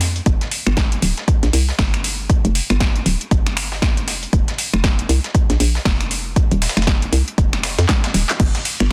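Deep house at 118 BPM in G minor, with a deep, smooth mood and a swung 16th-note feel, in an excerpt cut from a longer piece. A hollow, knocking FM bass with a fast attack and bouncy, decaying notes sits up front from D1 to F2, pumping against the sidechain. An overdriven electronic kick enters at 0.3 seconds, deep and layered, re-recorded in a large room and placed up front. Alongside it, a produced house kit brings a punchy snare, metallic hats, finger snaps, handclaps and a crash cymbal. A gritty, sampler-style soul kit with a medium-tuned snare and filtered, pumping hats sits in the background. A drum fill arrives at 7.9 seconds, and the whole is framed by digital ambience and a dense, heavily limited modern master.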